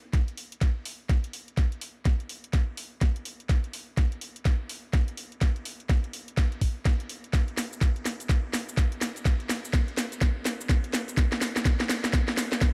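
Swaggering and gritty, this bass house cut runs at 125 BPM in 4/4 with a 61% swing on the sixteenths that gives the groove a loping bounce. An electronic kick drum sits up front from 0.1 seconds, its knocking, overdriven thump layered and produced. Alongside it, a garage drum kit brings a cracking snare, warm hi-hats and shaker, its layered electronic sounds re-recorded in a small room yet still placed close and forward in the mix. The whole passage plays as a build-up carried by a continuous drum fill through to 12.7 seconds, with a light reverb lending a touch of air. Cut from a longer piece, it feels like pure rhythmic tension waiting for a drop.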